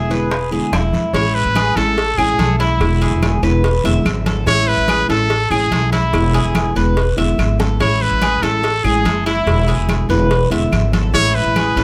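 Sunny and warm, this brief 144 BPM Cuban son and guajira passage in A major moves between E7 and Amaj7 as a bright, punchy trumpet carries a vibrato-laced solo melody up front over a thumpy, gut-strung pizzicato upright bass, a full-bodied jumbo steel-string acoustic guitar with audible finger squeak, and metallic double-stringed Cuban tres arpeggios, while background congas, tight high-tuned bongos and cowbell, woody claves and a raspy guiro join within the first second and a drum fill lands at 7.6 s, captured with close, detailed microphones and light reverb.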